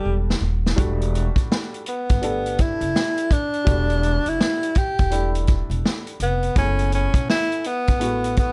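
A brief drum fill opens this mellow, smoky jazz-hop excerpt at 83 BPM in E minor, as a breathy tenor saxophone sings the lead in a subtoned, vibrato-laden jazz style with scooped notes, over a worn, slightly detuned upright piano. Pizzicato upright bass on gut strings adds a woody, thumpy low end, while the vintage kit brings a punchy kick, medium-tuned snare and hi-hat with a rolled-off top and 12-bit sampler grit, all riding a swung 16th-note groove. The dry mix keeps the sax, bass and drums up front, and the harmony moves from Em11 to F#m11 at 6.6 seconds.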